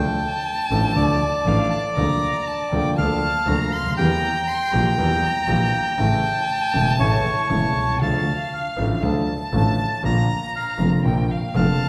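This tense, sultry tango fragment opens with all four players together, moving with a flexible, rubato feel. A reedy, bright bandoneon carries the melody up front, while a bowed violin adds a second line above it, warm and expressive, with vibrato, portamento and a soft attack. Beneath them, a concert grand piano supplies the accompaniment with a smooth, vintage character, deep bass and audible action noise that lend it an intimate, up-front presence. A single bowed double bass holds the low end with a rich tone, played sul tasto with an airy bow, light vibrato and a gentle attack. The ensemble sits in the wet reverb of a church or concert hall, which gives the sound a lingering 1.7-second tail before the fragment breaks off at about 11.9 seconds.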